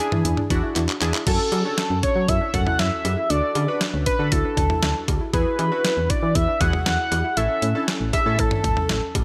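A bold, nasal octave-doubled sawtooth lead sits up front in this nocturnal, melancholic synth-pop excerpt, carrying the sustained melody with chorus and delay. Beneath it, warm analog keys built from detuned square, sawtooth and triangle tones with ring modulation and a filter sweep supply the accompaniment. A soft, round pluck plays arpeggios in the background, its dark, short-decay tone softened by chorus and delay. The detuned 8-bit digital drum machine is thumpy and tape-colored, mixing kick, snare, hi-hat, handclaps, cowbell, toms and crash, with a drum fill from 0.8 to 1.3 seconds leading into the main passage. A punchy, round FM bass anchors the low end as the harmony moves from E7 through F#m, D and Eadd9 to A, all set in a light reverb.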